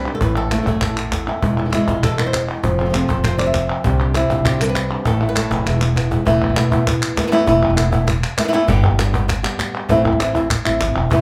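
Driven by a straight 4/4 pulse at 198 BPM, this passionate, mournful flamenco excerpt sets a fingerpicked lead flamenco guitar up front, carrying the melody over moody changes from Asus2 through E and F. A second fingerpicked guitar, with audible finger squeak, adds background stabs until 6.3 seconds, while a woody, thumpy pizzicato upright bass on gut strings anchors the low end. Crisp palmas hand claps and a snappy cajon, played with hard hands and sitting in the background, supply percussion, and a drum fill from 5.5 seconds leads into a second section on Esus4, G and Am, all captured as a live band in one room with moderate large-studio reverb.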